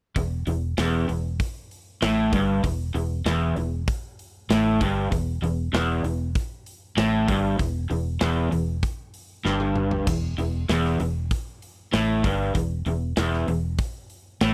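A dry, close recording in a 1970s studio style, with little reverb, gives this short cut from a longer piece of blues rock and southern rock a tight, in-your-face presence. At 97 BPM in a straight 4/4, the power trio sets a driving, swaggering mood, settling on an Emadd11 chord from the start. A crunchy, overdriven electric guitar, picked and double-tracked, sits up front playing a low riff between E2 and A2. Beneath it, a vintage fingered electric bass, amped and foam-muted, adds a dark, round bottom in the E1 to A1 range. The big acoustic rock kit, also up front, brings a punchy kick, a medium-tuned snare, bright crash and hi-hat cymbals, and toms, with a drum fill from 9.5 to 10.1 seconds, and the whole trio plays together until 14.5 seconds.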